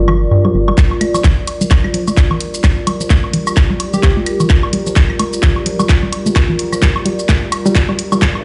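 A rubbery square bass and a deep, moody pad open this quirky, clinical minimal techno fragment, the bass soon dropping away as a hollow, detuned square pluck riff with dub echo and tape-echoed claves, woodblock and congas take shape, then a tight, up-front electronic kick and a garage kit of handclaps, hi-hat and shaker arrive at 0.8 s for a swung build-up with a drum fill and a filter sweep, a brief punchy unison lead sounds at 3.9 s, and a background riser lands at 8.4 s, the whole mix ringing through a stone-room reverb as if played on a big sound system in a bare room.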